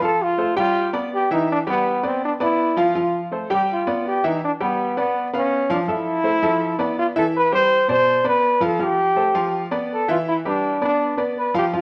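Danceable and sunny, this short Latin excerpt moves at a straight 164 BPM in 4/4, with a bright trombone carrying the melody in a pop style with vibrato, sounding distant and roomy yet up front. A clear baby grand piano accompanies it from start to finish, intimate and present with short sustain and audible action noise, while moving through jazzy chords like Dm69, Db7b9 and Cmaj9. The whole recording sits in a moderate large-studio reverb and carries the worn, warbling pitch drift of old cassette tape.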